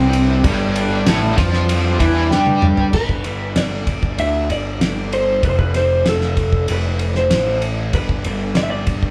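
Hazy and trippy, this short excerpt of psychedelic rock moves at 96 BPM in a straight 4/4, centred on G mixolydian with a shift to F and back to G. It opens with a reedy tonewheel organ holding sustained chords in the background through a slow rotary speaker, its key click audible, alongside a crunchy, double-tracked overdriven guitar riff shimmering with harmonic tremolo up front. Beneath them a fuzz-drenched picked electric bass stays punchy and bright for the whole clip, while a cloth-damped, thuddy drum kit with dark cymbals, a fat snare and a tight kick sits close and saturated. A drum fill from 2.3 to 2.9 seconds marks the moment the organ and riff guitar stop and a compressed, slightly broken-up electric slide guitar takes over the melody in a high register. The band plays live in one room, wrapped in moderate studio reverb that adds to the dreamy haze.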